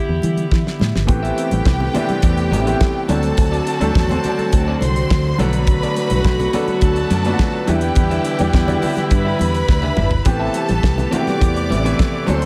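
A dry, up-front 70s drum kit leads this sultry, driving disco cut from a longer piece, its fat snare and tight kick setting a straight 104 BPM in 4/4 in A dorian, with fills at 0.5 and 9.7 seconds. Beneath it, a round, dark fingered electric bass sounds direct and amped with a foam-muted thud, while very quiet congas add thick-skinned, damped, soft-handed color with a compressed, saturated edge. A studio string section opens the recording, holding close, floating sul tasto chords with a soft attack. At 1.1 seconds, a distant, lush violin section enters with an expressive, vibrato-rich second line. At the same moment, an intimate grand piano with audible action noise and a picked, compressed electric guitar on the edge of break-up fill in the accompaniment, the guitar sitting in the background. The harmony moves through Em7, Am9, D7, Bm7 and Em7 before returning to Am9, all set in a light, small-room reverb.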